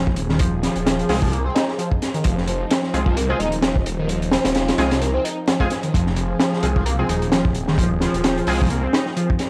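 A funky 4/4 breakbeat groove at 130 BPM drives this energetic fragment in F minor, its sixteenths swung at 56% and resting on a single Fm chord throughout. The crunchy drum kit sits up front with a tight kick, a high-tuned snare and hi-hat, its dark, rolled-off top giving the break a smooth, small-room feel. Beneath it, a thick, detuned saw bass swirls through a phaser, ranging from Eb1 to C2, while an overdriven synth lead screams out a gritty, guitar-like riff between Eb3 and Eb4, colored by distortion, vibrato, ensemble chorus and tape echo. From 1.1 seconds, bold, punchy orchestra-hit-like stabs cut in with a filter sweep, built-in reverb and tape echo. From the very start, a slow-attack analog pad holds sustained chords in the background, its moving notch evolving under phaser, chorus and sidechain pumping. The overall sound is dry and hardware-raw, with vinyl crackle adding grit to the mix.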